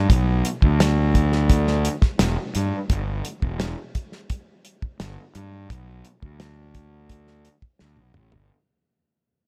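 A straight 4/4 groove at 86 BPM in G major drives this short psychedelic rock fragment, cut from a longer piece, with a kaleidoscopic, trippy mood and a fade-out across its whole 8.5 seconds. A fuzz-toned fingered electric bass, overdriven and punchy, sits up front alongside a damped 70s drum kit whose dry hi-hat, tight kick, medium-tuned snare and toms carry a rolled-off top. A drum fill closes the passage from 7.8 seconds, all within a light reverb.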